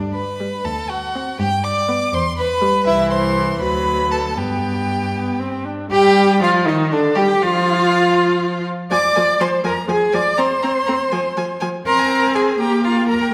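A spirited, cheerful classical-period movement for string quartet in 6/8, cut from a longer piece and set in a wet concert hall. The first violin carries the melody high with light vibrato and a close, smooth tone, while the second violin plays an even inner line and the viola, up front and expressive, colours the accompaniment with portamento above a focused, forward cello bass. After opening on bright diatonic chords, the harmony turns at 5.9 seconds to darker, richer colours, moving through a brief unharmonised stretch before settling among minor and suspended chords.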